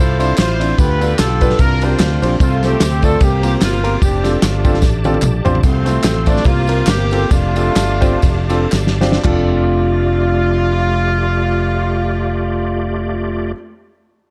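Uptempo gospel in F major with a swung 4/4 feel, uplifting and reverent, cut from a longer piece that moves between 111 and 148 BPM and slows down from 5.6 to 9.2 seconds. A punchy, present horn section carries the melody over sustained chords from a reedy tonewheel organ with fast rotary speaker and chorus vibrato sitting in the background, an up-front fingered electric bass, and a natural concert grand piano with deep bass joining at 0.2 seconds. A tight soul drum kit with dark cymbals adds fills before dropping out at 9.4 seconds, while close, dry egg shaker and group handclaps sit low under a dark production with light reverb and small room ambience.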